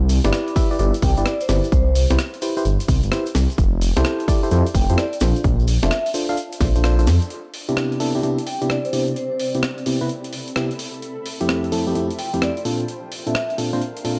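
A dark, rumbling detuned saw bass anchors this sunny, soulful two-step UK garage cut at 129 BPM in C major, joined by a punchy electronic kick, a gritty, sampler-style breakbeat kit of hi-hat, rim click and snare, and a grainy cabasa in the background, all riding a swung feel. A glassy, bell-like FM electric piano with chorus and tape echo plays stabs over chords moving through Cmaj7, Gadd11, Fmaj9 and Bbmaj7, while a ringing vibraphone with fast motor vibrato and tape echo carries the melody in brief phrases. The kick drops out just before a band accent at 6.8 seconds, after which the bass and cabasa fall away. From 8.5 seconds a cloudy, evolving granular pad with sidechain pumping fills in beneath the keys and breakbeat, all set in a dry, cassette-tape sound.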